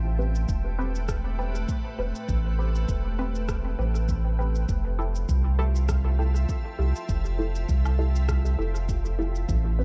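The groove sits at 100 BPM in 4/4 with a light swing on the sixteenths, carried by a deep, layered electronic kick entering at 0.5 seconds and a faint electronic shaker, rim click and woodblock touched with studio reverb and dub echo. This is hazy, meditative ambient dub, cut from a longer piece and built on a slow move from Am7 to Fmaj7 at 4.7 seconds. A round, soft sub bass sits up front from the start, sustaining low notes with a fast attack. Above it, an organ-like additive pad holds pure, calm chords with a slow attack and long release, its bright, evolving tone thickened by ensemble chorus and built-in reverb. Filtered chord stabs from 0.2 seconds give short, muted plucks of detuned sawtooth, coloured by phaser, subtle chorus, cassette tape grain and dub echo, all inside a digital ambience with an echo-heavy mix.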